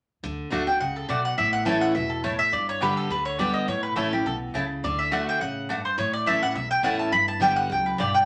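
A wet studio reverb surrounds this driving, rustic bluegrass excerpt at 209 BPM in D major, where a full-bodied picked steel-string guitar with audible finger squeak plays its accompaniment up front, a thumpy pizzicato upright bass sits in the background, one round mandolin punches out stabs and a second double-strung mandolin carries the melody through a D, A and G progression that runs from 0.2 to 8.3 seconds.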